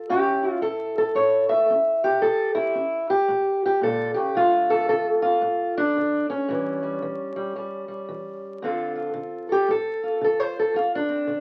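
Soulful and brooding, this short excerpt of acoustic country blues moves at 112 BPM in 4/4 with a swung feel, set in D minor. A single fingerpicked steel-string acoustic guitar carries everything, its dark, boxy parlour tone sitting up front as it ranges from low D2 up to E5. The harmony shifts between A7 and Dm, settling on Dm7 at 8.6 seconds, where the guitar moves into a solo passage that runs to the close at 11.4 seconds. A moderate studio ambience surrounds the instrument, while the sound of a very old 78 rpm record, complete with vinyl crackle, lends the recording an aged, weathered character. The result feels intimate and melancholy, like a fragment lifted from a longer performance.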